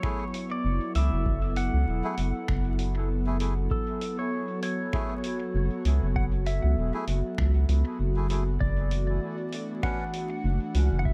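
A round, up-front analog bass enters at 0.6 s beneath a deep, tape-warmed electronic kick and a muffled, pitched-down sampler kit of finger snaps and hi-hat, while an airy, breathy pad holds F#m9 before shifting to Bmadd9 at 8.6 s, reedy melodica stabs and a bright, twangy clean lap steel slide melody trail dub echoes, and vinyl crackle over a dark production gives this hazy, meditative ambient dub fragment in F# minor at 98 BPM its lightly swung 4/4 drift.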